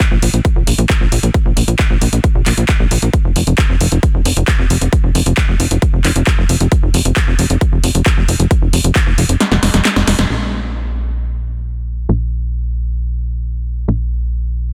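Soaring and driving, this uplifting trance excerpt runs at 134 BPM in a straight 4/4 and is cut from a longer piece. An overdriven, layered electronic kick anchors the groove from the start until 9.0 seconds, alongside a punchy analog drum machine whose handclaps, hi-hat and snare sit up front with a tape-warm character and a short room on the snare, clap and hats. From 0.1 seconds a tight sequencer bass pulses between F1 and Bb1, its sawtooth and square-wave tones shaped by ring modulation, a fast-attack filter pluck and tube saturation, with sidechain pumping that keeps it breathing against the beat. The kick drops out for a drum fill near the end of the opening stretch, and a band accent at 10.2 seconds marks the turn into a new section, where the bass carries on alone to 14.7 seconds. The sound is dry and close, with a dense, heavily limited modern master.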